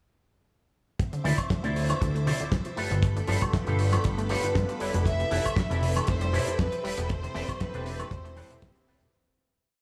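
A fat, saturated analog bass sits up front in this groovy, sensual nu-disco piece at 118 BPM in D dorian, riding a dotted rhythm over a tight, dry four-on-the-floor kick and a damped 70s kit whose fat snare, hi-hat and woodblock carry a swung disco backbeat. Around them a twangy envelope-filtered electric guitar plays funk chord rhythms, a warbling, cassette-tinged unison pluck runs a 16-step arpeggio, a mellow analog pad adds syncopated chord stabs, and a lush vintage string machine, pumping with the sidechain, holds chords through Dm9, G9, Fmaj9#11 and Am9/E. A distant, vibrato-rich studio violin section enters at 5.1 seconds with call-like motifs, and the echo-heavy, small-room mix begins fading out at 6.4 seconds.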